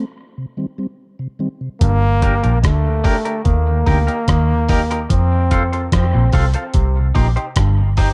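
A deep, heavy dub reggae piece opens with a break of soft, flute-like tonewheel organ turning through a slow rotary speaker under a filter sweep, and at 1.8 seconds a round, foam-muted bass and a gritty sampler-style kit with a thumpy kick, hi-hat and rim click drop in up front, joined by a punchy, close-miked trombone melody with vibrato and tape echo, a stringy overdriven clav riff in the background through phaser and tape echo, and, from 2.2 seconds, a clean hollow-body guitar with tremolo and tape echo, all set in a dark production with digital ambience over a Cm, Gm, Eb, F progression.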